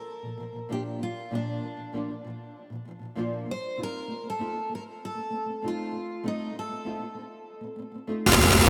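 Pop with a heartfelt, carefree mood, cut from a longer piece, in which an up-front picked steel-string acoustic guitar carries the melody through lush chorus and diffuse ambient delay until 7.8 s, while a dark, woody, double-tracked nylon-string guitar with old strings fingerpicks the accompaniment from Bb to F7/A in a small room with light reverb, ringing on alone until 8.6 s.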